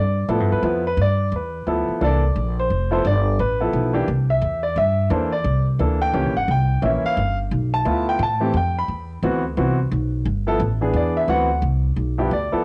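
A home recording on cassette with light studio reverb, this short jazz excerpt places both instruments up front. At 175 BPM in 3/4 with a swing feel on the eighth notes, the tune in G mixolydian feels playful and swinging. A clear, natural grand piano carries the melody across a range from G2 to B5, its tone colored by a cassette tape effect. Beneath it, a woody, warm pizzicato upright bass with steel strings holds down the low end from F1 to A2, and both parts play throughout the 12.6 seconds. The harmony moves through rich extended chords such as G13, C13 and D13, with a C#dim7 passing moment at 6.1 seconds before reaching G69 at 10.3 seconds, then E7 and D13, as the fragment is cut from a longer piece.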